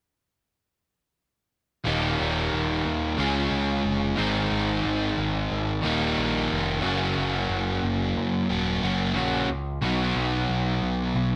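An up-front, overdriven semi-hollow guitar carries a swaggering, driving rock riff in straight 4/4 alongside a sludgy, distorted second guitar that also plays the riff, with both entering at 1.8 seconds and running to 11.4 seconds. A growling, bright picked electric bass with overdrive joins at 1.9 seconds, anchoring the low end as the riff moves through Eb, Db, Ab, Gb and B. The parts sit in moderate studio reverb, and the passage is cut from a longer piece.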